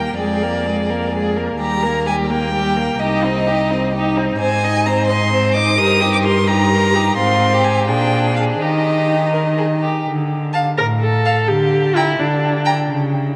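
A string quartet enters together in a quick, urgent classical-period movement in 6/8: the close first violin carries the melody with vibrato, soft attacks and expressive portamento, above a more distant second violin line and a focused viola accompaniment. The cello grounds the bass up front with a smooth, even tone, and all four bowed players sound rich and are bathed in a cathedral reverb that places them in a vast, echoing space. At 10.1 s the music moves into a dramatic new section, and after the upper parts fall silent around 12.9 s the cello sounds on briefly until 13.4 s, where this cut from a longer piece ends.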